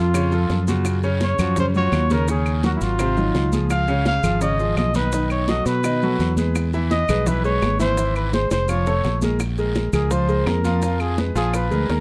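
A dark, punchy trumpet, clear grand piano and a bright, growly fingered electric bass that sits up front all open this fiery, sultry slice of Afro-Cuban jazz at once. The trumpet carries the melody with scooped notes, a smooth top and forceful jazz phrasing, bathed in plate reverb. The piano sounds intimate and natural, with its action noise audible beneath the chords. From 0.1 seconds a percussion bed of high-tuned, thick-skinned congas, round low-tuned bongos, woody claves and grainy, mellow maracas fills in behind, joined by a raspy guiro at 0.2 seconds, the drums played with hard hands in a close, dry sound. A drum fill at 8.5 seconds leads into a new section at 9.4 seconds, where the trumpet takes a solo as this piece, cut from a longer one, ends.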